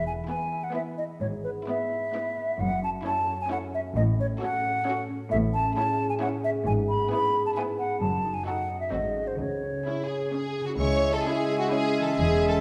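An airy, hollow concert flute sits up front on a second line, beside a ringing, fingerpicked concert harp spinning arpeggios, in this playful, magical film cue at 132 BPM in a straight 3/4 that settles into C# minor from 5.3 s. Smooth bowed violins carry the melody from the background, while a lush second violin line, expressive violas with portamento, smooth cellos and a rich double bass section fill out the string body. At 10.8 s a mellow clarinet, a soft-edged cor anglais and a present bassoon join, and a dark French horn section enters on sustained chords, all bathed in a recital hall's wet reverb as the cut closes.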